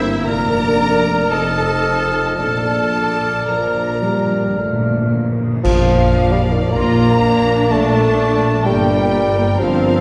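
Classical, a slow romantic orchestral movement in Bb major and 3/4 at around 54-64 BPM, tender and serene with a flexible rubato feel, cut from a longer piece and heard from further back in a reverberant concert hall. Lush, vibrato-rich violins carry the melody over a second violin line, with focused violas, smooth cellos, woody double basses and a mellow tuba underneath, while a mellow bassoon adds accompaniment and a close, tight French horn section holds chords until 5.6 s. A pure flute and a clear clarinet add brief second lines near the start, and from 2.4 s round, soft-mallet timpani bring a fill, joined by dark cymbals and concert bass drum, leading into a band accent at 5.6 s.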